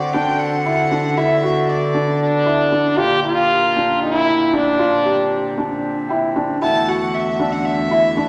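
Contemporary instrumental chamber music in an uneven 7/8 metre, this short excerpt feels urgent yet pensive. A felt-muted upright piano carries soft, mellow arpeggios at the heart of the texture, while a single cello holds the bass with a rich, floating sul tasto tone and a pedal harmonium breathes reedy, dark sustained chords in the background. An intimate violin, bowed close and up front with light vibrato and an airy stroke, sings the melody at the opening and returns from 6.6 seconds. In between, a stopped French horn plays a second line from 2.2 seconds, its nasal, metallic colour the most prominent sound in the mix. A delicate celesta adds sweet, bell-like touches from the background, and a recital hall reverb lends the ensemble a wet, spacious glow.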